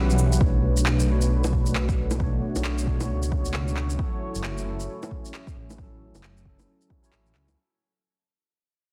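Rainy and nocturnal, this short future garage fragment moves at 134 BPM in 4/4 with swung sixteenths, shifting from Bm9 to F#m7 at 4.0 seconds as it fades out from 0.4 seconds onward. An up-front, rumbling detuned saw bass pumps under a moody analog pad with chorus and 12-bit sampler grit, while a clean tine electric piano sits in the background with tape echo, the same grit and sidechain pumping. An overdriven electronic kick entering at 0.4 seconds joins electronic shaker, cabasa, handclaps and bongos, all treated with studio reverb, and the whole is wrapped in digital ambience, vinyl crackle and a dense, heavily limited master.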